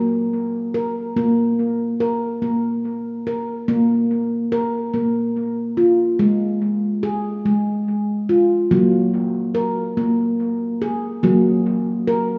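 A wet plate reverb with a 2.6-second tail and heavy echo surround this short studio recording, giving it a spacious, dreamy sheen. It is a gentle, hypnotic piece of meditative world music for tuned percussion, moving at 72 BPM in a straight 3/4. A single handpan carries the whole piece from 0.0 to 12.4 seconds, sitting up front in the mix with a ringing, nitrided-steel tone that has a slightly boxy, small-room character. Struck with the fingertips and spanning Gb3 to Bb4, it is coloured by a dub echo that stretches each note into the surrounding space. The opening moment has the instrument sounding free of any chord before the harmony settles at 3.7 seconds, then moves through Bb5, Fm/Ab and Gb. Cut from a longer work, the fragment feels like a calm, suspended moment of reflection.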